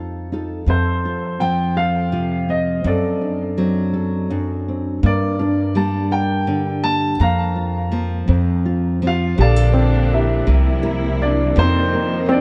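In a slow, straight 6/8 at 55 BPM, this excerpt from a nostalgic, heartfelt acoustic folk-pop ballad sets an up-front concert grand piano melody, treated with lush chorus and analog delay, over a dark, thumb-plucked nylon-string guitar and a woody, pizzicato upright bass, moving through chords such as F, D7/F#, Gm and Fsus4. At 5.4 s a soft, felt-muted upright piano adds quiet arpeggios in the background, its action noise audible and its delay echoing, and at 9.4 s a distant, focused string section enters with bowed, vibrato-rich sustained chords over Bbmaj7 and C7. A moderate plate reverb gives the whole mix a dreamy, soaked atmosphere.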